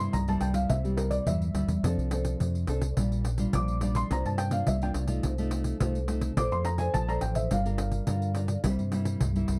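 A straight, festive samba and choro groove in four is set by a jingly, dry pandeiro and a round, punchy fingered electric bass sitting up front. Over fingerpicked nylon-string guitar, with its classical tone and audible finger squeak, a felt-muted upright piano carries the playful melody in a soft, intimate voice thick with felt and action noise until 8.6 seconds. Chords move from C7 through Bbmaj9 and Gm7 back to C7 under light reverb and a dark, warm production, in a short cut from a longer piece.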